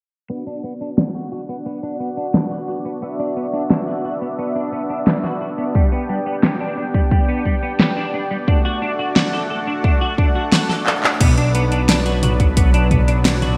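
A straight 4/4 pulse from an up-front pop drum kit, with a fat gated-reverb snare, metallic hats, handclaps, toms and crash, drives this nocturnal, nostalgic synthwave fragment, as a smooth, detuned soft supersaw holds pumping chords through Bm, G and D beside a clean, picked electric guitar riff bathed in chorus, delay and shimmer reverb, both under a filter sweep until 11.2 seconds, while a punchy electronic kick thumps in at 5.8 seconds and, after a drum fill, a thick, nasal analog bass arrives at 11.2 seconds amid a bright 1980s-style hall sheen.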